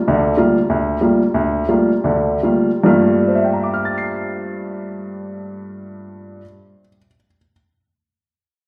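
A baby grand piano plays from 0.1 seconds, sitting present and up front with a warm tone as it opens on a Gm9 chord in G dorian and slows down through to 2.8 seconds. This brief jazz excerpt has a cool, spiritual mood, swung eighths in 4/4, and a tempo moving between 138 and 197 BPM, with the piano spanning D2 to C7. A wet large-studio reverb surrounds the instrument, giving it a live, in-the-room sound until it stops at 7.5 seconds.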